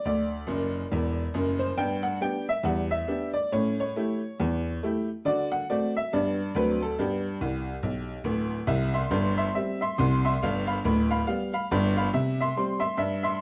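Playful and swinging, this short stride-piano jazz excerpt moves at 139 BPM in 4/4 with a light swing on the eighth notes. A lone tack piano carries everything, its metallic, jangly tone sitting up front in a boxy, vintage sound with short sustain that gives each note a percussive snap. The playing spans from deep bass notes up into the upper treble, with honky-tonk fills at 0.5 seconds and again at 7.4 seconds. Starting in G major over a progression through Em7, A7 and D7, the music shifts to C major at 8.7 seconds, moving between C and G7. A moderate studio reverb gives the piano a modest sense of room, while lossy compression artefacts add a slightly worn edge to the recording, which is cut from a longer piece.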